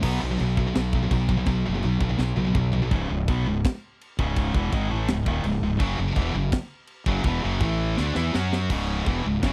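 An up-front, scooped and bright high-gain electric guitar drives this heavy, epic metal excerpt at 166 BPM in C# minor, joined by a second distorted, picked guitar riff that drops out at 2.9 seconds and returns at 5.8. A growly, fuzz-drenched fingered bass sits just as forward, while a tight acoustic kit with a high-tuned snare, tight kick, toms, crash and china cymbals hammers out a straight 4/4 and rolls into fills at 2.2 and 8.0 seconds. The riffs move from B5 through C#m, F#5 and A5, captured in a dry, close, 1970s-style studio sound cut from a longer piece.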